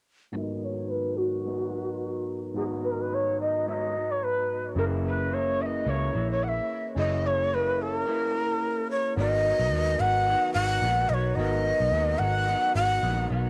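A hazy cassette home recording in a small booth, this mellow bedroom-pop clip has a gently swung feel and a filter sweep running through its first 9.2 seconds. A barky, lightly overdriven tine electric piano and a twangy, slightly broken-up electric guitar with lush chorus and vibrato lay down G#m7 and F#7 chords. Over them an up-front, breathy bamboo shakuhachi carries the melody with vibrato, tongued chiff and analog delay, while a round, foam-muted picked electric bass enters at 4.8 seconds.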